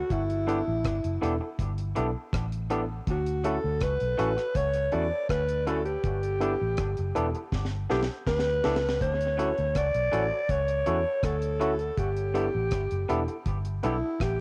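A raspy, growling alto saxophone with light vibrato leads this sweet, romantic lovers rock reggae excerpt, close-miked and up front with tape echo as it sings a jazz-style solo over a gentle sway between G6 and Dmaj7. Beneath it, a round, punchy, foam-muted fingered bass sits forward in the mix, while a dry acoustic drum kit with a high-tuned snare, tight kick, rim clicks and hi-hat carries its own tape echo and breaks into a fill from 7.5 to 9.0 seconds. A lightly overdriven, barky tine electric piano fills in the harmony, and a slightly broken-up, picked guitar through a small old amp adds compressed stabs in the background, all captured as a lo-fi home cassette recording with light reverb and small-room ambience.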